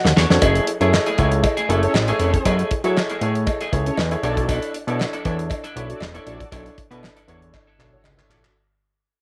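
A short drum fill opens this early-eighties boogie funk excerpt as a slightly broken-up, compressed electric guitar riff with lush chorus and a fat, detuned analog bass enter together at 0.0 seconds. The groove is funky and danceable at 118 BPM in a straight 4/4, in F# minor, moving from F#m9 to Bm11. The dry, acoustic 70s kit sits up front with a tight kick, fat snare, hi-hat and handclaps, while a baby grand piano adds open, long-sustaining accompaniment and a metallic cowbell rings distantly in the background. At 1.8 seconds a round, dark synth brass line joins far back in the mix, treated with chorus, phaser and slapback echo. The nasal, sawtooth-and-square bass stays prominent against a warm small-room ambience with light reverb and faint mains hum, and the whole passage fades out while a second drum fill arrives at 7.5 seconds.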